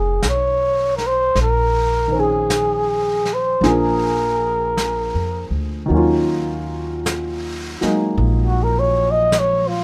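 A dry, close recording of an intimate, melancholic jazz ballad at 53 BPM in 4/4 with a swung feel, moving from Bb minor to Eb minor at 5.9 s in this excerpt from a longer piece. A dark, whispered trumpet carries the melody up front with breathy vibrato and soft attacks, stepping into a solo from 5.9 s, while a worn baby grand piano with audible action noise accompanies over woody, thumpy pizzicato upright bass. A vintage kit played with brushes on snare and hi-hat enters at 0.2 s, sitting quietly beneath in its small-room sound.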